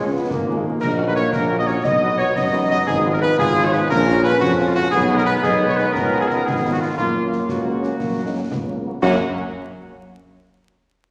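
A wet, roomy scoring-stage sound with a vinyl crackle frames this rousing, festive military-style march for wind band in 6/8, moving at 117 BPM in F# major, cut from a longer piece. An up-front cornet carries the melody over a mellow, distant tuba bass, while a vibrato-rich woodwind section and a smooth euphonium shape second lines in the background, a bright trombone section holds sustained chords, and a very quiet French horn section fills in the accompaniment. Concert snare, bass drum and dark-toned clash cymbals join at 0.3 seconds, and the harmony travels through a diminished chord and a C#9 before settling home on F# near 7.0 seconds.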